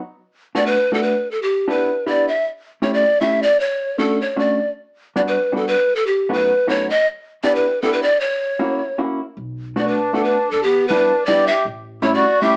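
A clean, dark hollow-body electric guitar opens this bittersweet, nostalgic musette waltz in B minor, its fingered accompaniment sitting compressed and up front at a lively 157 BPM in a swung 3/4. Almost at once a bamboo pan flute takes the melody, breathy and mellow with vibrato, a crisp chiff on each attack and a close-miked, expressive presence. The chords move through a wistful cycle from Bm7 toward Dmaj7, Gmaj7 and a B7 before turning back through Em7 and F#7. Near 9.4 seconds a woody pizzicato upright bass slips in low and soft, and an accordion follows at about 9.8 seconds with a reedy, sweet second line coloured by light tremolo tuning. The band sounds as if playing together in one room, touched by light reverb and heard through a small-speaker tone, and this passage is cut from a longer piece.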